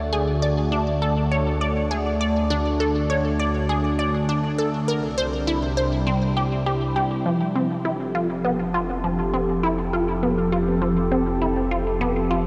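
Luminous and expansive, this excerpt of ambient, sequencer-driven space music sets a swirling, nasal analog pad with phaser and chorus over a fat, thick analog bass. A juicy, squelchy blip pluck carries the riff up front, its bright, resonant notes treated with phaser and tape echo, while the harmony moves from D to C7 before settling on F at 7.3 seconds. A huge, wet reverb and the warbling pitch drift of worn cassette tape give the whole piece a hazy glow.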